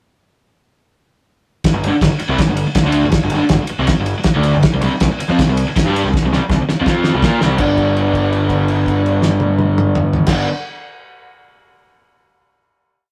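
Garage rock in G major at 163 BPM, this short, swaggering piece has a raw, rough rehearsal-room sound with light reverb. A cloth-damped drum kit with a thuddy, fat snare, tight kick and dark cymbals sets a garage stomp groove from 1.6 seconds, sitting up front beside the guitar. The overdriven, double-tracked electric guitar plays a picked power-chord riff over chords moving from G5 to C5. Beneath it, a growling picked electric bass, bright, punchy and tube-saturated, plays driving eighth notes that double the guitar riff. A drum fill at 6.1 seconds leads into a final G chord at 7.6 seconds, held to the close.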